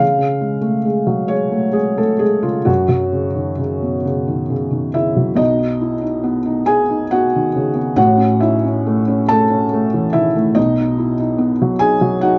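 A felt-muted upright piano plays alone from the first moment, setting an intimate, wistful mood in a neoclassical minimalist style. The tempo is slow, around 45 BPM counted in dotted quarters of a 6/8 metre, and the beats fall unevenly with a free, rubato feel. The piano's tone is dark and boxy, sitting up front with the soft clicks and thumps of its action clearly audible, and it spans from deep bass notes up into the middle-high register. The harmony opens on C# and moves to F#5 at 2.7 seconds, then a new passage from 5.4 seconds cycles through B, A and back to B. A light reverb surrounds the instrument, and the brief passage, 12.4 seconds long, is cut from a longer piece.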